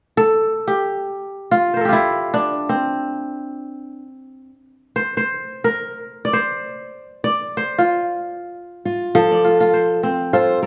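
Kora arpeggios ring out crisp and up front in this hypnotic West African traditional fragment, unfolding in free time in F major over a single F chord and playing alone until 8.9 seconds. A fingerpicked steel-string acoustic guitar then enters with a warm, up-front melody carrying an auditorium character in its upper middle register, joining the kora through the end at 10.7 seconds. A moderate recital-hall reverb surrounds both instruments, and the production leans dark and warm.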